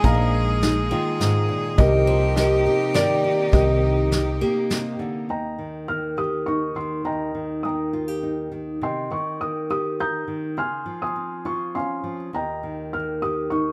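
Heartfelt and hopeful, this excerpt from an acoustic folk-pop ballad at 102 BPM in 3/4 opens with a dark, felt-muted upright piano melody bathed in plate reverb, a fingerpicked nylon-string guitar with audible finger squeak, a bright, nasal distant cello, a lush symphonic string section in the background, a parlour steel-string guitar picking arpeggios, a round, woody fretless bass and a soft brush drum kit, before the bass, drums and other supporting parts drop out by 5.5 seconds, leaving the piano and nylon-string guitar to carry the music in Eb mixolydian over chords moving through Cm7 and Dbmaj7.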